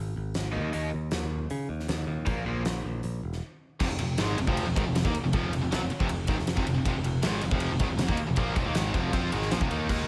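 A growly, punchy picked electric bass opens this driving, aggressive hard rock passage, soon joined by a huge arena drum kit with a fat snare and punchy kick and by a cranked, overdriven, double-tracked stack guitar riff up front, until after a short break a second tight, distorted guitar riff enters at 3.8 seconds, all set in studio reverb.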